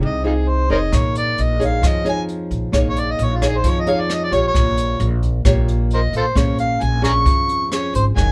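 Dark, fingerpicked nylon-string guitar and a woody, growly pizzicato upright bass open this melancholic, wistful bossa nova fragment in Bb minor at 133 BPM, joined at 0.1 seconds by a gritty, amplified, up-front harmonica soloing with light vibrato, tongue slaps and scooped notes, and at 0.9 seconds by a brushed kit with a boomy kick, hi-hat and rim click, all captured live in one room with light reverb as the chords move from Fm7 through Bbm7, Bbm6 and Bbm9.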